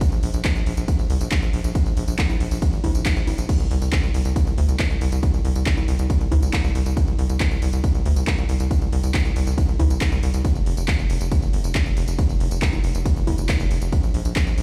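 Uplifting trance at 138 BPM in a soaring, euphoric mood, this excerpt sets a heavy, layered electronic kick up front against an overdriven analog drum machine of congas, crash and ride cymbals, handclaps, hi-hat and tambourine, while a tight sawtooth-and-square sequencer bass with a fast-attack filter pluck pumps under sidechain from 0.1 seconds, all carried by a stone-room reverb as if played on a big sound system in a bare room.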